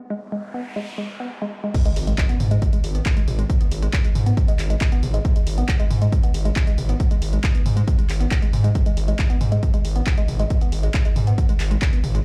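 At 137 BPM in a straight 4/4, this driving, intense peak-time techno excerpt in G# minor opens with a woody, wave-folded pluck riff under a filter sweep and a background noise sweep, then drops at 1.7 seconds into an overdriven, up-front layered kick, punchy analog drum-machine crash, handclaps, hi-hat and toms, a gritty saturated synth bass pumping from 2.0 seconds, and an impact, all played on a big sound system in a bare room with large studio reverb.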